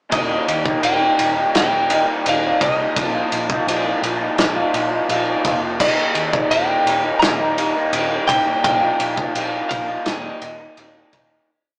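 A bright, clean twelve-string electric guitar carries a compressed, motif-based melody in short period phrases over this hazy, dreamy whole piece of shoegaze and dream pop rock. Beneath it, a raw garage guitar strums overdriven, lo-fi chords in a double-tracked riff that sits up front alongside the melody. A vintage picked electric bass, foam-muted and round, drives steady eighth notes far lower in the mix, while a loose indie drum kit plays a half-big groove with a tight kick, a medium-tuned snare, and dark-toned crash and ride cymbals. The harmony moves between Eb and Bbsus4 before settling on an Eb5 at 10.1 seconds, and a fade-out begins at 8.6 seconds and runs to the close at 11.5 seconds. The sound is that of a rough rehearsal-room recording heard through a small speaker, wrapped in a wet small-room reverb.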